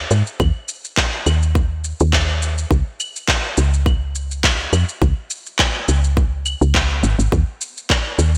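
Organic downtempo with an earthy, warm swing, built on a soft, round FM bass whose woody, mellow notes sit up front beside a tight electronic kick and electronic shaker, claves and handclaps dressed in gated reverb, all polished by a bright 1980s-style digital sheen and light ambience in this short cut from a longer piece.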